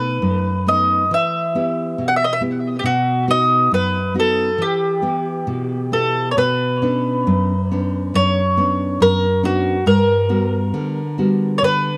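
Longing and passionate, this fado-style ballad moves at 68 BPM in 2/4 with a rubato feel, tuned to A4 = 445 Hz. A bright, woody mandolin carries the melody from F#4 to F#5, its picked double strings sitting up front and touched by tape echo. Beneath it, an up-front nylon-string guitar supplies fingerpicked accompaniment from F#2 to G4, full-bodied with a deep classical tone. The harmony begins in E harmonic minor, cycling through B7, Em and B, then shifts to B harmonic minor at 6.4 seconds with a Bmadd9 and a Gmaj7 at 9.9 seconds. Both instruments play throughout this twelve-second cut from a longer piece, set in a moderate small room reverb with a dark, warm production.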